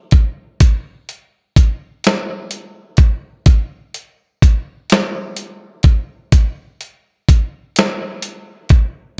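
Sultry and yearning, this short R&B fragment, cut from a longer piece, rests on a slow, straight 6/8 sway. The only part is a dusty soul sampler-style drum kit, entering at 0.1 seconds and playing until 8.9 seconds, with kick drum, snare drum and hi-hat. Its sound is gritty and compressed, with a thumpy kick and a medium-tuned snare kept at natural pitch. The kit carries the air of having been re-recorded in a large room, yet it sits up front in the mix. Overall the recording stays dry, with little reverb.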